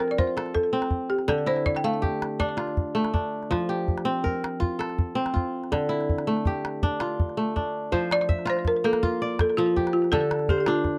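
A warm, flowing West African traditional excerpt in 12/8 opens with a woody, round balafon melody played with hard rubber mallets and touched by slapback echo, over ringing, crisp fingerpicked kora arpeggios and a small, close calabash; the balafon drops out at 3.3 seconds, leaving the up-front kora and the calabash over the F and Dm chords until the balafon returns at 8.1 seconds, captured in a dry, close 1970s-style studio sound with light reverb.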